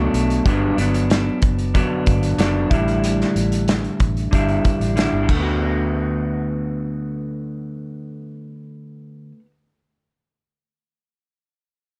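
A slightly broken-up electric guitar through a small old amp sits up front with lush chorus and a warbly pitch drift, drifting over Gmaj7, A7sus4 and D6 in this dreamy, laid-back indie bedroom-pop excerpt at 93 BPM in D major, carried by a round, foam-muted vintage bass and a loose acoustic kit with a tight kick and pumping small-room sound that stops at 5.4 s, all within light small-room reverb.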